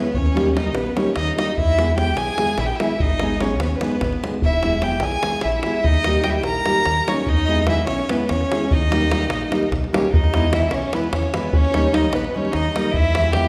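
Balkan folk in a restless, fiery wedding-band style, this excerpt from a longer piece drives along in 7/8 at 294 BPM (counted in eighths), with an up-front fiddle carrying the melody in a focused, smooth-topped tone with light vibrato, a rich bowed violin adding a second line, a full-bodied fingerpicked nylon-string guitar accompanying, a dark, round fingered electric bass anchoring the low end, and a tight, dry davul, all set in a wet recital-hall reverb over chords that move mostly between Eb and E with a turn to Abm at 3.0 seconds.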